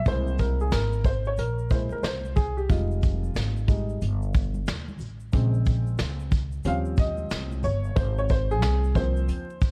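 A smooth, relaxed jazz-hop excerpt in Ab major at 91 BPM with a swung 16th feel opens on a woody, slightly detuned upright piano soloing over growly pizzicato upright bass, joined at 0.1 seconds by an up-front vintage brush kit with punchy kick and 12-bit sampler grit and by ringing tube shaker and congas in the background, moving through C7b13, Fm9, Bbm7 and Eb13 to rest on Ab69 amid dark production and vinyl crackle.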